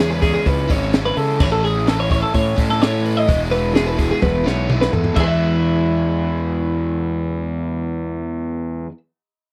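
A dry, close 1970s-style studio sound frames this bright, intricate math rock and midwest emo excerpt at 127 BPM in E major, where a clean, twangy twelve-string electric guitar picks arpeggios over a double-tracked, crunchy overdriven guitar riff and a round, up-front fuzz bass, while a compact cocktail drum kit with a high-tuned snare, punchy kick and rolled-off top enters at 0.2 seconds, plays a fill from 4.2 seconds and stops at 5.3 seconds as the chords move from C#m7 to A to E.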